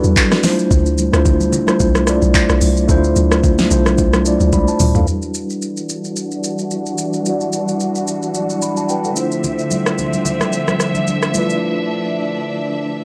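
Late-night and deep, this amapiano excerpt moves at 110 BPM in 4/4 with a light swing on the 16ths, set in E phrygian and tuned slightly below standard pitch. A mellow tine electric piano, clean and softened by a low-pass filter, carries the accompaniment up front throughout. A smooth R&B drum kit with soft kick, fat snare and crisp hats, plus handclaps, rim clicks, shaker and toms, adds overdriven, 12-bit sampler grit. The round, dark log drum bass and the thick-skinned congas sit under the opening drop, which ends in a drum fill before the bass falls away at 5.1 seconds. There a lush, bowed string section enters on sustained chords with vibrato, pumping against the sidechain and filtered as a sweep runs through the second half, while the congas return in the background. The kit stops at 11.6 seconds for a short break, leaving piano and strings over harmony that moves from Dm9 to Em9 and back, all in a dry, gritty sound with a light digital ambience.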